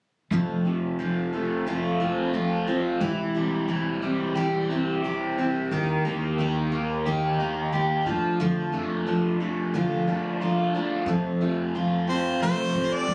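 A straight 4/4 rock groove carries this jangly, hopeful cut from a longer piece. A full-bodied, picked steel-string acoustic guitar and a raw, overdriven garage electric with phaser share the front, the electric playing a double-tracked riff over chords moving F, C/E, Eb and Dm/F, while a woody, thumpy pizzicato upright bass sits in the background. The music shifts to a new section at 11.1 s, where a harmonica with vibrato and scooped notes takes a pop-style solo from 12.1 s, all heard through a phone recording in a small room with light club reverb.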